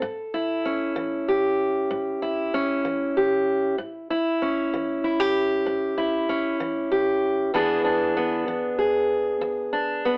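A laid-back, swaggering blues excerpt in A mixolydian at 64 BPM in a straight 12/8, carried by a lone fingerpicked steel-string acoustic guitar with a warm, up-front auditorium tone, spanning E2 to A4 and moving from A7 to E7 at 7.5 seconds, all heard through a telephone-like filter with moderate studio reverb.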